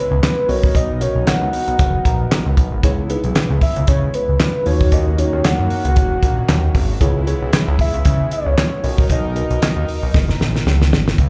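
A round, octave-layered synth lead with vibrato and a brassy, detuned sawtooth pad open this slick, danceable early-eighties boogie funk excerpt at 115 BPM with a light 16th-note swing, joined at once by a thick, wave-folded analog bass and an up-front, damped 70s drum kit of tight kick, fat snare, hi-hat and handclaps. A worn, slightly out-of-tune tine electric piano, lightly overdriven through its built-in speakers, adds a fill at 1.8 seconds over Bmaj7 as the chords move through Bmaj7, C#m7, D#m7, C#m7 and back to Bmaj7, and a drum fill closes from 10.1 seconds, all in the lightly reverberant sound of a live club gig heard through the PA.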